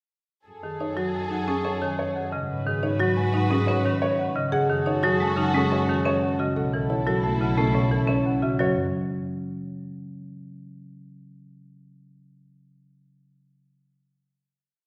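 A short, complete piece of minimalist classical pattern music, it moves at a brisk 177 BPM in 6/4 and sits in F# dorian, feeling at once meditative and urgent. A warm baby grand piano carries the melody as a repeated short cell, joined by a bright, percussive marimba played with hard mallets up front and a second, buzzing marimba with medium mallets spinning woody, dry arpeggios. Underneath, a lush studio string section holds bowed chords with vibrato and swelling held notes, while a dark double bass section lays down long, smooth bass notes with a soft attack and expressive portamento. The harmony cycles through F#madd9, G#m7 and B7sus4 before everything settles on a final F#5 chord at 8.6 seconds. A wet recital hall reverb places the ensemble further back in the room, giving the repeated cells a spacious glow.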